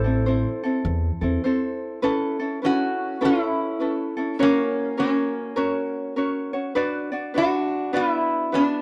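Swung eighths at 102 BPM in 4/4 carry this sunny, relaxed Hawaiian excerpt in A major, where a metallic, nasal resonator slide guitar played with fingerpicks sings the melody up front over a light, fingerpicked ukulele, while a woody pizzicato upright bass appears only until 1.4 s, all captured in a dry, close 1970s-style studio sound.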